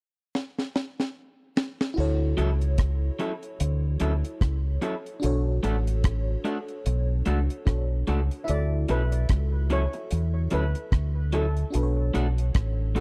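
A dry, dark reggae drum kit with a high-tuned snare and tight kick opens this tender, romantic lovers rock excerpt with a fill. A dreamy, detuned FM electric piano with a soft pad layer, chorus and phaser enters at 1.9 seconds, a round, deep fingered dub bass follows at 2.0 seconds, and slightly broken-up, compressed guitar stabs join at 2.4 seconds. A mellow, shimmering steel pan carries the melody through tape echo from 8.4 seconds, all within a close, 1970s-style small-room sound.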